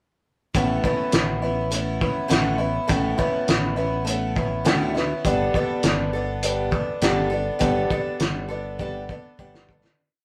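Warm and hopeful, this short folk rock and heartland rock piece has a band playing live together in one room, with a moderate studio reverb around them. An up-front, shimmering twelve-string acoustic guitar carries the verse with octave-doubled folk strumming in open chord shapes, its boxy archtop tone marked by finger squeak, while a picked electric bass plays a dotted figure and a cloth-damped drum kit sounds muffled, gritty and lo-fi, with a fat snare and tight kick in a rock groove. The harmony moves from Aadd9 to Gadd9 at 5.2 seconds, and a drum fill from 8.8 seconds rides the fade-out that begins at 7.6 seconds.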